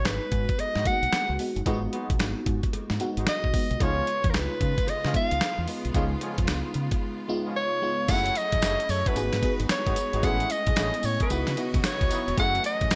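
R&B in a new jack swing vein, this punchy, confident excerpt from a longer piece rides a swung groove. A breathy soprano saxophone with scooped notes and vibrato carries the melody up front over a dreamy, detuned FM electric piano with a soft pad layer treated with chorus and phaser, a round, dark fingered bass, and a gritty sampler-style drum kit with a thumpy kick, tambourine and gated reverb. A very quiet metallic cowbell enters at 0.1 seconds, mellow octave-doubled horn stabs with delay join at 0.8 seconds, and a rich bowed string section adds sustained background chords from 3.8 seconds, all framed by bright 1980s-style digital production.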